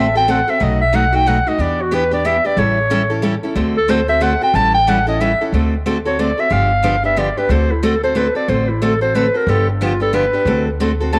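A swung 3/4 lilt at 183 BPM drives this charming, lively excerpt of acoustic string swing in D mixolydian, where an up-front mellow clarinet solos with vibrato and scooped notes over bright, picked steel-string acoustic guitar with audible finger squeak and a woody, growly pizzicato upright bass, heard through a moderate spring reverb.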